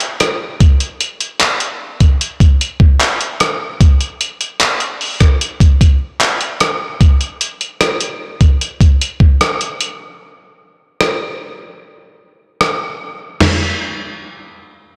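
Romantic and smooth in mood, this R&B excerpt rests entirely on a dusty, sampler-style soul drum kit in a straight 4/4 feel. The kit sits up front and sounds gritty and compressed, with a thumpy kick, a medium-tuned snare carrying soft clipping, and crash cymbal, handclaps, hi-hat, rim click and toms rounding out the set. It has a tape-warm character and was re-recorded in a large room, and the whole recording is blown-out and overdriven, touched with light reverb. The drums play from the start until 13.6 seconds, moving through changing sections, with a break from 10.2 seconds before the groove winds into a short closing passage.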